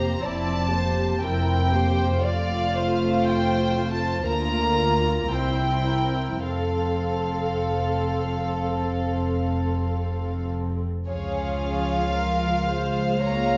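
Classical slow romantic movement for string orchestra, lyrical and tender with rubato, in which an up-front violin section sings the melody in a dark, intimate tone over a pure, floating second violin line, a smooth-topped viola accompaniment and a bass of warm chamber cellos and symphonic double basses, every section bowed sul tasto with soft attacks in a reverberant recital hall, until a turn to Db at 11.1 s opens a new section of this brief fragment.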